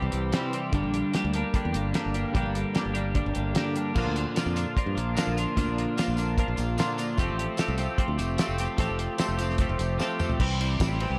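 Set in a small room with light reverb, this upbeat yet wistful indie rock excerpt moves at 149 BPM in a straight 4/4, cycling through C, Gm, Bb and Fadd9. A bright, compressed twelve-string electric guitar with analog chorus sits up front beside a clean, picked twangy electric guitar washed in lush chorus and analog delay, both playing riffs over a bright, direct fingered bass. A cloth-damped, thuddy drum kit with a fat snare, tight kick and dark cymbals drives the groove, a jingly vintage tambourine joins in the background at 4.0 seconds, and a drum fill at 10.0 seconds closes the section.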